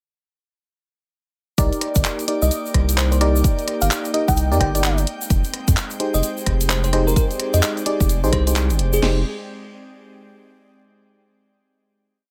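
This is a skippy, moody two-step UK garage piece at 129 BPM in F dorian, with a 62% swing on the sixteenths. At 1.6 s it opens straight into the drop. A punchy kick, cracking snare and crash from a tape-warm, layered electronic kit sit up front, alongside swung closed hats, rim clicks and handclaps. A deep, saturated sine sub bass plays a skipping syncopated line. Glassy, warbling FM electric piano stabs with rootless voicings carry chorus and delay, while an airy, breathy pad holds sustained chords underneath with a pumping sidechain feel. A grainy acoustic egg shaker plays hand-played sixteenths in the background. At 2.4 s a sparkling, bell-like FM electric piano enters with short answering phrases coloured by chorus, phaser and delay, while the harmony moves from Cm9 to Fm7 at 5.1 s. At 9.0 s the groove gives way to a final chord, heard through a light reverb.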